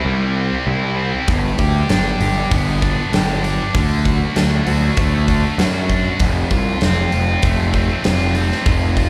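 Driving and confident, this short classic rock passage, cut from a longer piece, moves at 98 BPM in a straight 4/4 feel, centered in G mixolydian. A tight, double-tracked distorted electric guitar sits up front playing a picked riff that ranges from F2 to G4, while a growly, fuzz-laden picked electric bass, overdriven and heard both direct and amped, anchors the low end from F1 to F#2. The big acoustic rock drum kit joins at 1.3 seconds with hi-hat, a punchy kick and a medium-tuned snare, carrying the bright ring of a stone room. The chords move from C to G, D and F, giving the riff its mixolydian swagger. The whole passage has the feel of a live club gig heard through the venue's PA, with small-room ambience and club reverb surrounding the band.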